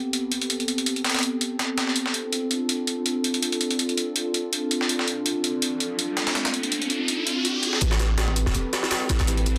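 A dense, heavily limited mix with light digital ambience opens this frenetic, dark drum and bass and jungle excerpt on a warbling, nostalgic pad of detuned sustained chords with chorus and reverb, while a gritty, compressed breakbeat kit of hi-hat and snare sits up front with small-room ambience and high-pass filtering. An electronic riser enters at 5.8 seconds, and at 7.8 seconds the build-up begins as a pitched-up jungle kit with a thumpy kick and high-tuned snare arrives alongside a deep, boomy 808-style sine bass. From that same point, a soft, wave-folded chord stab with phaser and dub echo sits in the background under a filter sweep.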